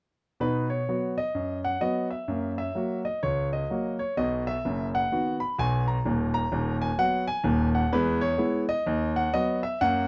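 A smooth, vintage-toned grand piano sits up front and carries this playful stride jazz fragment alone, swinging its eighth notes at 128 BPM in 4/4 and ranging from deep bass notes up into the upper register. Cut from a longer piece, the passage runs from 0.4 to 10.1 seconds, moving through B major, F#7, B/D# and E before settling back on B/D#. A moderate club reverb and a dark, mellow production round off the sound.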